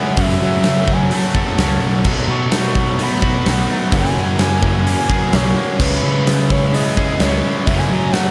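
A dreamy, reverb-soaked mix opens this wistful, blissful shoegaze and dream pop excerpt at 128 BPM, where a reedy, woody FM lead with chorus and delay carries the melody over very quiet twangy clean guitar arpeggios, a double-tracked distorted guitar riff, a background overdriven guitar with reverse reverb, a thick fuzz guitar, a round fuzz-driven picked bass and a punchy, up-front arena drum kit entering at 0.2 s, all moving through F#m7, B7, F#9 and C#m7.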